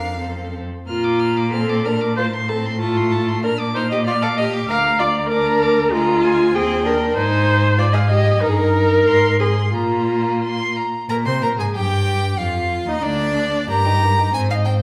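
In a 2/4 with a flexible, rubato feel, this spirited, cheerful classical-period movement for string quartet opens mid-flow, cut from a longer piece. A clear, close first violin carries the melody with vibrato, while a rich, smooth second violin spins an even second line from a distance, and the up-front viola adds expressive accompaniment with soft attacks and portamento. A focused, forward cello grounds the bass, and the whole quartet blooms in the wet reverb of a recital hall, shifting into a new section at 11.1 seconds.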